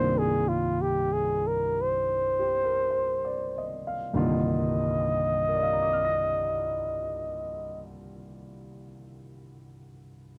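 Swung eighths in a slow 4/4 between 46 and 66 BPM, easing back over the first 4.1 seconds, carry this intimate, smoky jazz ballad excerpt in C minor: a mellow, smooth-topped flugelhorn sings the solo melody with vibrato, sitting up front until 7.8 seconds, over a warm, natural grand piano that opens on a Cm11 chord and plays on alone until 10.4 seconds, all captured in a dry, close 1970s-style studio sound with light reverb.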